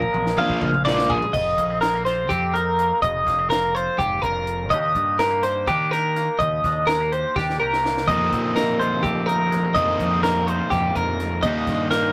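Driving eighths at 250 BPM in an odd 7/8 metre set a straight, restless pulse for this playful, intricate math rock and midwest emo excerpt, cut from a longer piece. A compact cocktail drum kit opens with a fill during the first 1.3 seconds, its punchy kick, high-tuned snare, toms, hi-hat and dark crash sounding dry and natural, and it fills again from 7.4 to 8.1 seconds. Up front, a compressed twelve-string electric guitar spins clean, picked arpeggios high in its range, while a twangy electric guitar adds quieter picked accompaniment beneath, and a bright, overdriven fingered bass growls low. A double-tracked, overdriven semi-hollow guitar punches in with its riff briefly near the start, then returns at 8.1 seconds to carry through to the close. The harmony moves from Bb7 to F9sus4 and Ebmaj7, circling back to F9sus4 and Ebmaj7, all captured in a rough rehearsal-room recording with tube saturation and a short booth ambience.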